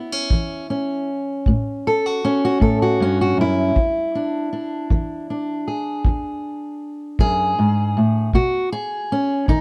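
This short cut from a longer piece rolls along in a slow, straight 12/8 feel, carried by a tight acoustic kick drum that comes in at 0.3 seconds, smooth and dark with a rolled-off top and the soft touch of brushes. It's acoustic country blues with a swaggering, gritty mood, set up as a sparse solo-or-duo arrangement. A fingerpicked steel-string acoustic guitar opens the recording at 0.0 seconds and takes the melody, sitting up front with a dark, concert-style tone that reaches from its low strings into the upper register. The harmony moves from A to E7, then lands on a bare B5 near the end. The sound is dry and intimate, captured with close, detailed microphones, while the kick carries a small-room character of its own.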